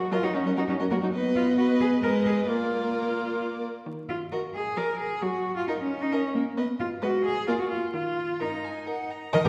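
An up-front cello bass line opens this graceful, spirited fragment of a quick classical-period string quartet movement in Eb minor at 132 BPM in 3/4, joined at 0.1 s by a rich viola accompaniment, a focused second violin line and a distant, smooth first violin melody sung with vibrato, the quartet heard from further back on a reverberant scoring stage through a layer of vinyl crackle.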